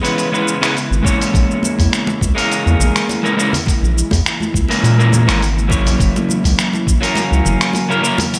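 A lightly swung 16th-note groove carries this smooth, relaxed sunset chillout, with a dusty, gritty sampler-style kit of finger snaps, hi-hat and shaker under gated reverb, a thumpy electronic kick arriving at 1.0 s, and congas tucked in the background from 1.6 s, while a deep, round analog bass enters at 0.9 s beneath an up-front, slightly broken-up picked electric guitar with delay and an ethereal, airy pad with ensemble chorus sustaining chords from C#m7 through A#m7b5 to F#7 in a bright 1980s-style digital production bathed in lush hall reverb.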